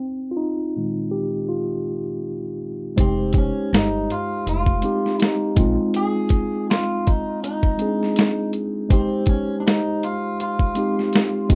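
Lo-fi hip hop with a hazy, reflective mood and a lightly swung feel, cut from a longer piece. A mellow, clean tine electric piano sits up front with cassette-tape colour and a low-pass filter, playing alone through a filter sweep until 3.0 seconds. At that point a gritty, compressed sampler-style boom bap kit with a thumpy kick arrives, along with a woody, dark pizzicato upright bass that drops out at 5.8 seconds, while a slightly broken-up, fingered electric guitar carries a filtered melody over minor-seventh and suspended chords in a rough home-demo mix with light reverb.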